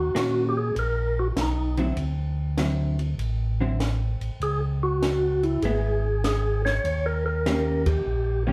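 A smoky, bluesy soul jazz organ trio swings in 4/4 as a soft, flute-like tonewheel organ with key click and fast rotary shimmer carries the melody over a round, lightly overdriven organ bass on slow rotary with chorus vibrato, joined at 0.1 seconds by a dark, clean hollow-body guitar comping and at 0.2 seconds by a compact cocktail kit with a high-tuned snare and tight kick, the whole band hitting an accent at 7.8 seconds in this short cut from a longer piece, heard from further back in a reverberant studio.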